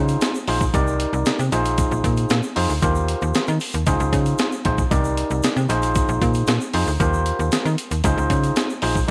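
A straight, danceable 4/4 groove from a compressed, sampler-style breakbeat kit, with a thumpy kick, high-tuned snare and hi-hat, drives this short cut of early-eighties boogie funk, while a grainy, bright egg shaker sits distant in the background of a large room. Up front, a snappy, slap-like FM bass with a metallic, fast attack and a decaying tone shares the spotlight with a barky, overdriven tine electric piano pushed through a combo amp, which comps a funky cycle of Dbmaj7, Cm9, Bb9sus4 and Eb6. Light digital reverb adds a touch of ambience to the whole mix.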